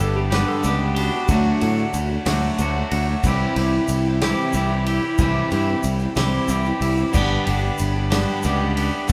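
Twangy, clean electric guitar sits up front with a riff over a shimmering, octave-doubled twelve-string acoustic guitar and a round picked bass, in a warm, nostalgic folk rock and heartland rock excerpt at 62 BPM in a straight 6/8 that moves from G through D and C back to G. A bright pedal steel guitar with volume swells sounds briefly at the start, overlapping a natural country drum kit that enters at 0.3 s with a punchy kick, medium-tuned snare, crash and ride, plus a grainy tube shaker in the background. A tonewheel organ with key click enters at 7.1 s with sustained chords, and the whole band plays live in one room with moderate large studio reverb.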